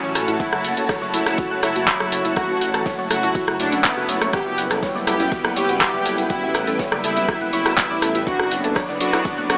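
Heard through light reverb with a small-speaker character, this excerpt of melodic techno feels driving and melancholic, moving in a straight four-beat pulse over chords of F#m7, Em/F# and Bm/F#. The deep house drum kit sits up front from 0.2 seconds with handclaps, hi-hat and rim click, joined at 0.4 seconds by a deep, layered electronic kick. Far beneath them, an oversized low-tuned acoustic kit adds a gritty, fat snare and ride cymbal, very quiet in a bright stone room. A smooth, detuned supersaw carries the melody with tape echo, while a soft, round pluck spins dark arpeggios in the background with subtle chorus, vintage 12-bit sampler grit and digital delay. Behind these, a lush, thick unison pad holds bright sustained chords through chorus and phaser, bold brassy analog synth stabs punctuate with delay, and a menacing, evolving detuned saw bass swells with tube saturation, its sound pumping along with the melody, pad, pluck and brass.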